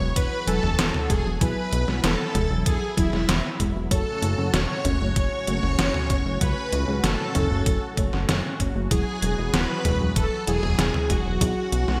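A glossy, saturated chorused synth bass sits up front in this cinematic, nostalgic synthwave excerpt at 96 BPM, joined from 0.2 s by a thumpy electronic kick and a detuned 8-bit drum machine whose hi-hat, snare and toms carry gated reverb, while a mellow supersaw with digital delay sings the melody over shimmering string-machine violins, a smooth analog pad with sidechain pumping, a very quiet lo-fi pluck playing warbling arpeggios and dreamy FM electric piano stabs, the chords moving from Eadd9 to F#m and back within a lush hall and bright 1980s-style digital production.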